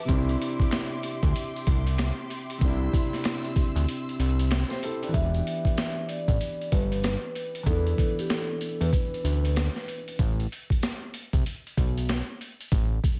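Vinyl crackle and a light reverb frame this reflective yet tough boom-bap hip-hop excerpt in E minor at 95 BPM, swung on the sixteenths, where a gritty, compressed sampler-style kit with a thumpy kick and high-tuned snare sits up front beside a fat, detuned sawtooth analog bass with a filter sweep. Over a Cadd9 chord, a dark, boxy grand piano with long sustain and lush, woody bowed strings carry the opening, dotted by very quiet, close finger snaps. At 5.1 seconds the harmony shifts to Em7 as the strings give way to a metallic, ringing soft-mallet vibraphone melody with slow motor vibrato and tape echo, before the piano and vibraphone stop at 10.2 seconds, leaving drums and bass to carry on.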